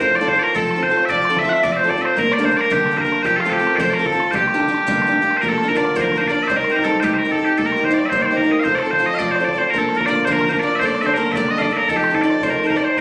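From the first moment, piercing, bright bagpipes carry the melody up front in this dark, wild and lively Celtic folk reel, together with a nasal, reedy bowed fiddle on a second line, a warm picked steel-string acoustic guitar giving up-front accompaniment, and a damped, tight bodhran in the background, all heard through a phone recording in a hall with moderate reverb and compression as the tune moves into a new section at 5.4 s in this passage cut from a longer piece.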